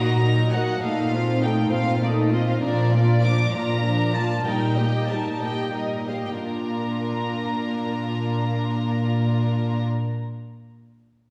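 A steady 6/8 pulse at 59-67 BPM drives this lively, spirited classical-period movement in Bb major for symphony orchestra, where the first violins carry a floating, pure melody over darker second violins, intimate violas with light vibrato and an up-front cello bass held on Bb, all playing sul tasto, with the tempo slowing from 1.7 to 6.4 seconds before a brief second section begins, heard from further back in a wet scoring stage reverb.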